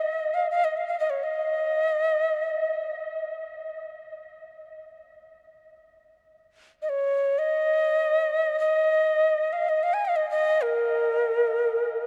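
In free time, this meditative world excerpt is a haunting, spacious solo for a Native American-style cedar flute that plays alone for its full 12.1 seconds, ranging from Bb4 to Ab5. The close-miked, up-front flute is woody and breathy, with a crisp, chiffy attack and expressive vibrato, trailed by a diffuse ambient delay. A huge, wet ambient reverb and a dark production surround it with a vast, shadowy space.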